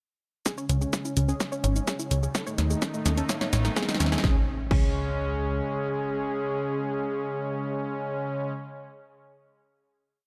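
Dark, cinematic melodic techno in a short complete piece, where an overdriven four-on-the-floor kick and a punchy snare, shaker, hat and crash kit drive a build with a drum fill and filter sweeps on the round background pluck arpeggios, the fat, wave-folded sawtooth lead riff and the brassy, warbling ring-modulated pad stabs, all three pumping to the sidechain alongside the funky off-beat sawtooth bass, before a very quiet riser and impact usher in a final held chord at 4.2 seconds carried by the lead and pad, all under light reverb.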